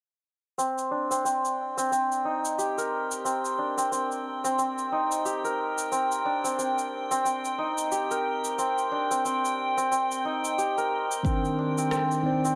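A bright, shimmering santur plays ringing arpeggios through a low-pass filter and delay over a tape-tinged electronic shaker and rim click in this meditative organic downtempo excerpt, joined at 1.3 seconds by a glassy texture of drifting overtones held on a single high note with chorus, before a clean tine electric piano with sidechain pumping and delay and a deep, overdriven electronic kick arrive at 11.2 seconds, all set within a huge ambient reverb over a Cm9 chord.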